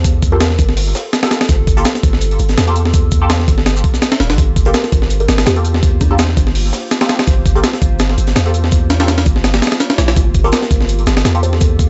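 Drum and bass with a jungle edge, this atmospheric, nostalgic excerpt rests on a single Gm9 chord and moves with a lightly swung 16th-note feel. Up front, a compressed, sampler-style breakbeat kit drives the groove with a thumpy kick, a high-tuned snare and hi-hat. Behind it sits a second, saturated kit of hi-hat, shaker and snare, dark and rolled-off, with high-pass filtering on its hats, snare, percussion and room. A deep, sine-based 808-style bass holds long, decaying notes beneath, while a muted, detuned dub chord stab with filter sweeps, phaser, ensemble chorus and dub echo punctuates throughout. A warbling, lo-fi pad enters at 0.2 seconds with slow-attack chords under chorus, phaser and built-in reverb, and a woody, hollow kalimba adds brief, echoing phrases in the background, including one at 4.7 seconds, all within a small, gritty room sound.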